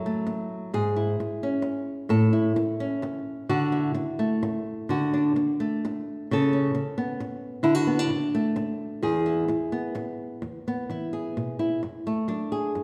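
A lone nylon-string guitar opens on an F#m7 chord, fingerpicked with a small, intimate tone that sits up front. This is solo folk guitar in a three-beat metre, played rubato so the pulse breathes freely, and the mood feels nostalgic yet hopeful. The harmony drifts through C#m/G#, A, Dadd9 and Aadd9/C# before settling on E at 9.0 seconds. A brief new passage begins at 10.4 seconds and turns to D/F# near the close. The guitar's warm voice spans from its low E string up to the A above middle C, carried by the lingering reverb of a church or concert hall in this short passage cut from a longer piece.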